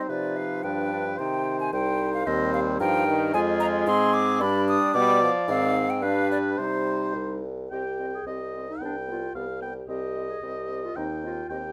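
A hollow, airy silver flute with vibrato and a crisp attack carries the melody over a clear oboe second line in this urgent, stormy classical-period wind quintet movement in C minor at 111 BPM in a quick 2/4, while a vintage-toned French horn and a distant, mellow clarinet fill in the accompaniment and an up-front bassoon with a soft attack anchors the bass, all in a light reverb through a short cut from a longer piece that turns to a new section at 7.7 seconds.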